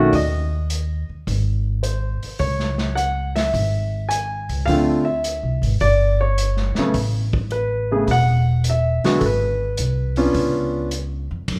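A close, intimate grand piano carries the melody, its natural tone and audible action noise up front, and it stops at 10.9 s, just before the others. A woody, thumpy pizzicato upright bass on gut strings and a muffled vintage drum kit with dark cymbals, a tight kick and hi-hat, snare and ride swing beside it at 106 BPM in 4/4, moving from C#m through Dm7 and Asus2 to a closing C#7b9. This warm, swinging jazz trio excerpt, tuned to A4 = 435 Hz, sounds like a band playing live in one room with moderate large studio reverb.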